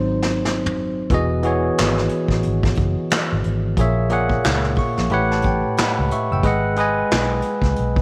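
Smooth and sensual, this swung neo-soul and R&B excerpt opens with a bell-like, barky tine electric piano solo over a brushed drum fill that enters at 0.2 seconds, before settling onto an Emaj9 chord at 1.1 seconds. A dark, round, foam-muted fingered electric bass sits beneath the up-front piano, while the vintage kit's punchy kick, medium-tuned snare, hi-hat, toms and handclaps carry a natural studio-room sound with a rolled-off top. The piano adds a fill from 4.4 to 6.4 seconds over extended chords such as A#m7b5 and A13, all set in a light, small-room reverb.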